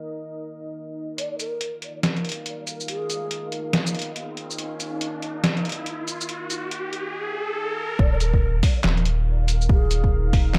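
A deep, dark ambient pad opens this excerpt from a longer deep dubstep piece, its detuned sawtooth unison and sub octave softened by chorus and built-in reverb into a moody, cavernous bed. At 1.2 seconds a breathy, hollow low ney enters with a mellow melody, low-passed, sent through dub echo and given a filter sweep, while a muffled, pitched-down sampler-style trip hop kit of handclaps, hi-hat, shaker and snare starts up, overdriven and compressed, sitting up front in a half-time, swung groove at 141 BPM. An electronic riser joins at 2.6 seconds, carrying the build-up to the drop at 8.0 seconds. There a round, soft dub sub bass lands on Eb1 alongside an overdriven, layered electronic kick that booms from a large room, and the ney returns over the heavy low end. The echo-heavy mix, with its light digital ambience, keeps the whole passage brooding and weighty.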